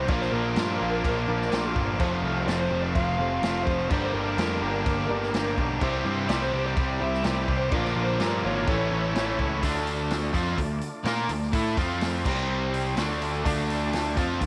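Driving and brooding, this classic rock excerpt in D minor moves at 126 BPM in a straight 4/4, built on a bank of overdriven guitar riffs: a bright, compressed electric guitar up front and two hollow-body semi-hollow guitars in the background, one of them double-tracked, all working the range from F2 to Bb4 over a punchy fuzz picked bass and a vintage drum kit with dark cymbals and a rolled-off top. A lo-fi lead guitar through a small cranked amp carries the melody until 9.4 s over a progression from Bb through F, Gm, C and Bb to A. A woody, slightly detuned upright piano sits very quiet beneath it, and a thick, lightly overdriven tonewheel organ with slow rotary vibrato is barely audible, before the section at 9.6 s turns to Dm with F5 and C5 power chords, all in a small echo-chamber room.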